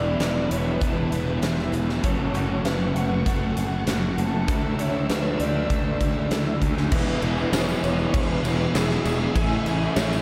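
A punchy, up-front arena drum kit with a fat snare drives this hazy, dreamy 98 BPM shoegaze and dream pop rock excerpt alongside a growly overdriven fuzz bass, a dark fuzz guitar riff and a very quiet raw garage guitar riff beneath a lo-fi, slightly broken-up melody from an electric guitar through a small old amp, while a shimmering picked twelve-string acoustic guitar plays arpeggios through chorus and diffuse ambient delay, a vintage string machine cello pad holds mellow sustained chords over a progression moving from E7 through F#madd9 and Dsus2, a jingly tambourine enters at 6.9 s, and a lush hall reverb soaks the mix.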